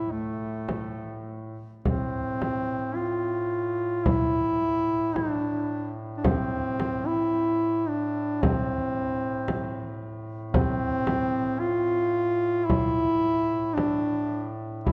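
A moderate church reverb with a long tail wraps this short cut from a longer Caucasian folk lament, giving it a solemn, mournful air. Up front, a mellow duduk carries the melody in a free, rubato folk style, its smooth top sitting in a middle register. Beneath it, a second duduk holds a low drone that sounds distant and roomy, its warm tone colored by scooped notes. A frame drum enters at 0.7 seconds, close and up front, with a deep, large acoustic body and the touch of soft hands. A new passage begins at 1.8 seconds and carries the piece through to its end, with the drone and melody sustaining the grieving mood.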